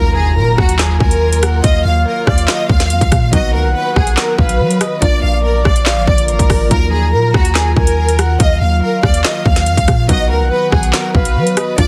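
Menacing and tense, this half-time drill cut at 142 BPM in Eb harmonic minor sets a bowed studio violin section, rich with vibrato and portamento and trailed by digital delay, alongside a breathy, flute-like synth lead with chorus and delay. Beneath them sit a soft, felt-muted upright piano, a warbling, nostalgic tape-like pad treated with chorus, reverb and phaser, and a deep, sine-toned 808-style bass that sustains long notes through the Ebmadd9, B and Bb changes. A background electronic impact opens the passage, and at 0.6 seconds an up-front drill kit arrives with a hard-clipped kick, woody snare, metallic hats, rim clicks and handclaps, all in a dry, dense, heavily limited mix.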